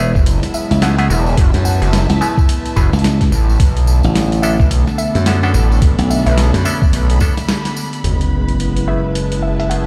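A dry mix heard through a big sound system in a bare stone room carries this swaggering, gritty glitch hop piece at 108 BPM in F# minor with a swung 16th feel, where an up-front glassy slap bass and a saturated, sawtooth-edged driven synth bass sit under a thumpy, pitched-down electronic kick and a tape-toned boom bap kit of hi-hat and medium-tuned snare, joined by jingly tambourine, a twangy, nasal clav stabbing through low-pass filter and delay, a warbling lo-fi pad with sidechain pumping, lush bowed strings, and a woody wave-folded pluck melody in the background, all moving from F#m11 to Bm9 before the slap bass stops at 6.6 seconds, a band accent and break arrive at 7.5 seconds, and a sub drop lands at 8.0 seconds as F#m11 returns.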